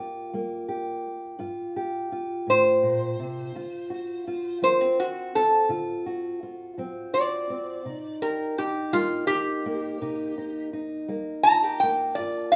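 A slow, straight 12/8 pulse at 56 BPM anchors this mournful, smoky acoustic country blues fragment, where a dark, woody fingerpicked steel-string guitar with old strings opens alone over Gm7 before a metallic, nasal resonator slide guitar, played with fingerpicks, enters at 2.5 seconds to carry the melody up front as the harmony moves on through D7#9 and Cm7, all in a small, lightly reverberant room with a rough home-demo feel.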